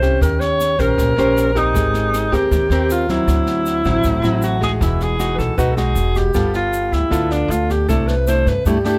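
Bossa nova at 156 BPM, relaxed and romantic, with a breathy, distant alto saxophone solo full of vibrato and scooped notes sitting up front over a warm, fingerpicked classical nylon-string guitar with fresh strings, a woody pizzicato upright bass, a natural small-room brush kit with a high-tuned snare and boomy kick, and a grainy, bright egg shaker in the background, set in light reverb as lush chords such as G#maj9, Emaj9 and C69 pass through this brief cut from a longer piece.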